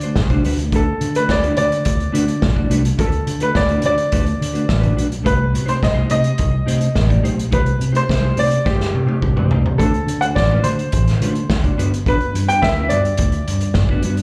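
Danceable and glamorous, this disco cut moves at 106 BPM in a straight 4/4, taken from a longer piece and heard as a live gig through a club's PA with light club reverb. A clear, worn baby grand piano carries the melody up front, its open tone and short sustain touched by slapback echo. A mellow, dark electric guitar plays clean, fingered accompaniment colored by analog chorus and its own slapback echo, while a fingered electric bass sounds round and amped underneath. The vintage acoustic kit sits up front with a punchy kick, medium-tuned snare, hi-hat and toms in a small, pumping room, its top rolled off. The harmony moves from Bm7 to Cm6, and a drum fill from 8.7 to 9.8 seconds leads into a new section at 9.8 seconds built on D7 and Gmaj7.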